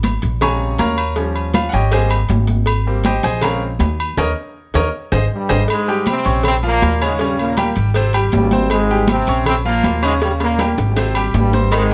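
This sunny, joyful salsa excerpt opens with a woody, growly upright bass, played pizzicato and up front, over damped, high-tuned congas, tight bongos and cowbell in the background, and ringing metal-shell timbales with agogo bells. At 0.4 seconds a bright, polished baby grand piano enters with a solo, cycling through Bbm7, Eb7 and Abmaj7 at a straight 159 BPM in Ab major. A drum fill and band accent arrive together at 4.2 seconds, and a brilliant trombone section takes the melody at 5.3 seconds, tight and close with light vibrato. The percussion adds another fill near the end of the phrase, and a saxophone section with jazz-style vibrato touches in at 11.7 seconds just as the passage cuts off. The sound is close and detailed, with light reverb.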